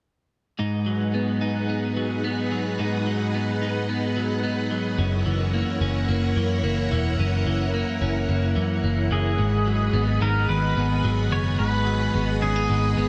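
A huge ambient reverb hangs over this melancholic, hazy dream pop excerpt, where a bright, slightly broken-up electric guitar sits up front with twangy, compressed arpeggios under subtle chorus and tape echo, set against a shimmering, warbling string machine holding slow-attack violin chords from 0.6 seconds. A dark, round, foam-muted bass enters at 5.0 seconds as the harmony moves from G#m7 to F#7 and back. At 9.1 seconds a clean pedal steel guitar, played with fingerpicks and slide, adds a brief melody of volume swells trailed by its own tape echo.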